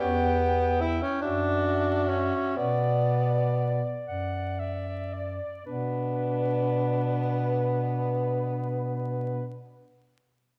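Elegiac and melancholic, this lyrical classical fragment for single-reed quartet unfolds in a rubato 6/8, slowing over its first 5.7 seconds before a second section begins. A clear, close-miked soprano saxophone carries the melody with soft-attacked vibrato alongside a bright alto saxophone's second line, while a warm tenor saxophone's accompaniment and a smooth-topped bass clarinet sit up front beneath them. The recital-hall reverb is wet and the production dark, with vinyl crackle.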